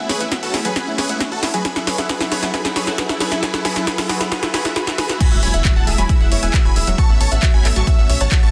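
Bittersweet and emotional, this uplifting trance excerpt builds with a drum fill from a punchy analog drum machine (snare, handclaps, hi-hat, ride and crash) over a tape-warm electronic kick. Above them, a huge, detuned supersaw lead carries the euphoric melody through phaser, cassette-tape colour and dub echo, and intimate bowed chamber strings hold soft sul tasto chords. A round analog pluck arpeggiates through lush chorus and tape echo, and a tight, driving sequencer bass pulses in the background, with lead, strings, pluck and bass all pumping to the sidechain. A very quiet riser then gives way to an impact as the drop lands at 5.2 seconds in a dense, heavily limited mix with light digital ambience.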